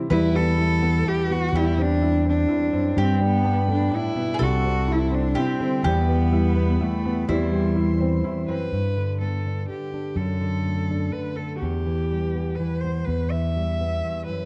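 A bowed cello carries the melody up front with a smooth, focused tone and vibrato in this gentle, nostalgic folk piece in 3/4 at 125 BPM in G major, cut from a longer work. A growly, amped fingered electric bass sits close beneath it, while a thumb-plucked classical nylon-string guitar accompanies throughout with audible finger squeak. A bright, double-strung picked mandolin adds a second line until about 8.4 seconds, and a woody upright piano with audible action noise plays arpeggios in the background until about 8.8 seconds, while a distant, floating chamber string section holds soft sustained chords from 3.0 to 8.7 seconds, all in a dark, warm concert hall space.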